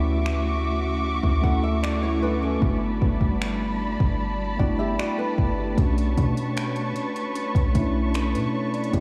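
A mellow tine electric piano, lush bowed strings and a deep, boomy 808-style bass open this dreamy, tender contemporary R&B excerpt at 76 BPM, moving through Dmaj9, Gmaj9 and Bm9 chords. A soft, smooth drum kit of finger snaps, hi-hat and kick enters at 0.3 s, while a fingerpicked nylon-string guitar with tape echo plays arpeggios in the background from 1.4 to 5.8 s, its fresh strings catching the odd finger squeak. The electric piano adds a fill from 4.2 s, and the whole mix is soaked in a huge ambient reverb that gives it a floating, studio-room glow.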